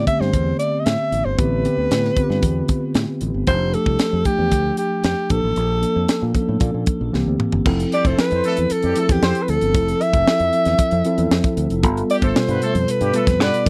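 Bittersweet and urban, this polished 1980s jazz-funk pop excerpt moves at 115 BPM in a straight 4/4, with a breathy, close-miked alto saxophone carrying the melody up front in an intimate jazz style full of vibrato and scooped notes. Beneath it, a mellow tine electric piano with subtle chorus plays the chords, a growly, punchy fingered electric bass drives the low end, and a tight funk drum kit with a high-tuned snare and punchy kick sits forward, turning a fill at 7.1 seconds. At 7.9 seconds a distant, roomy horn section with light vibrato adds a second line over chords moving from Fmaj7 to G9, all captured in a dry, close 1970s-style studio sound.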